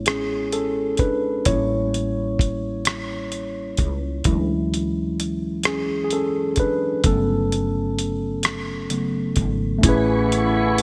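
Slow six-eight R&B with a warm, tender mood, cut from a longer piece. A mellow tine electric piano carries the featured solo part from the start, clean and up front, moving through rich chords from Amaj7 and A7b9 to Dmaj9#11 and Gmaj9#11. Beneath it, a woody fretless electric bass sits dark, growly and round, with an ensemble chorus effect. A dusty, sampler-style drum kit enters at 0.1 seconds: it sounds compressed and gritty, with a thumpy kick, hi-hat and rim click placed forward in the mix. At 9.8 seconds the harmony settles on Amaj9 as a smooth tonewheel organ with key click, chorus vibrato and a slow rotary speaker joins in, alongside jazz-style horn stabs voiced in octaves. The production is bright and 1980s-style digital, with a light reverb.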